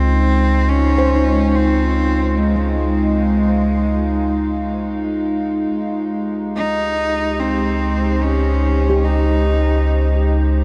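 Serene and peaceful, this ambient passage in free time rests on a single Dbmaj9 chord in Db lydian, cut from a longer piece. A rich, intense cello with light vibrato carries the melody from the start, its bowed tone slightly nasal and boxy, with tape echo trailing its phrases until it stops at 10.3 seconds. Alongside it, a warbling, nostalgic pad of detuned square, triangle and sawtooth tones holds sustained chords with slow attack and long release, colored by chorus, its own reverb and a phaser for a lo-fi, mellow shimmer. A round, deep analog bass sits up front on a low Db, while a handpan rings softly in the background with meditative arpeggios struck by fingertips and echoed on tape. The whole is bathed in a huge, wet reverb with a dark production.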